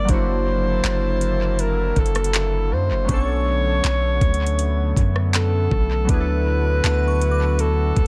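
A breathy alto saxophone carries the melody up front with light vibrato and tape echo over detuned analog keys, a shimmering pulse-width pad pumping with sidechain and a deep, sine-like 808-style bass, joined at 0.1 seconds by a smooth electronic R&B kit of knocking kick, metallic hi-hat, handclaps and rim click, with a glassy FM synth bell entering in the background at 3.1 seconds, in this romantic, smooth contemporary R&B excerpt at 80 BPM that moves from F#7alt through Bm9 to D69 in an echo-heavy, dry mix.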